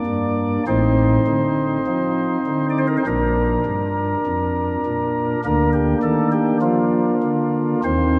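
A pipe organ on soft flute stops opens this brief classical fragment, heard alone and close up front from its first moment to the end at 8.2 seconds. The piece is a serene, majestic chorale in a steady, straight 4/4, its slow harmony moving from Bb to F7/A, back to Bb, and then settling on Bb/D. The baroque voicing spans from a deep A1 up to D5, and each pipe speaks with a gentle chiff while a tremulant adds a gently trembling quality to the sustained tones. A wet church reverb, lingering for about 3.4 seconds, surrounds the organ with a sense of stone and height. Cut from a longer work, the passage feels like a calm, stately moment of devotion caught mid-phrase.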